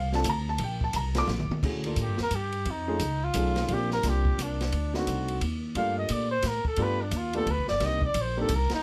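Small-group swing and bop jazz in a playful, relaxed 3/4 at 175 BPM in G minor, where a woody, intimate, slightly detuned upright piano with audible action noise and long sustain plays from the outset alongside an up-front, steel-strung pizzicato upright bass and a dark, smooth drum kit with a boomy kick, whose fill at 1.3 seconds leads into a vibrato-laden, soft-attack flugelhorn solo entering at 2.0 seconds with a distant, roomy tone, recorded dry and close in this brief cut from a longer piece.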